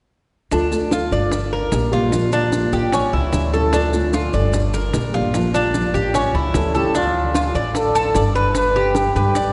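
Cuban son and guajira at 149 BPM in D harmonic minor, this warm, nostalgic excerpt sets an up-front, metallic tres playing arpeggios over full-bodied, thumb-plucked nylon-string guitar, a woody, thumpy gut-string upright bass, round low-tuned bongos in the background and grainy, saturated maracas, all bathed in a cavernous cathedral reverb, until a veiled, bucket-muted trumpet with light vibrato takes the solo melody from 6.6 seconds, shortly before the guitar stops at 6.9 seconds.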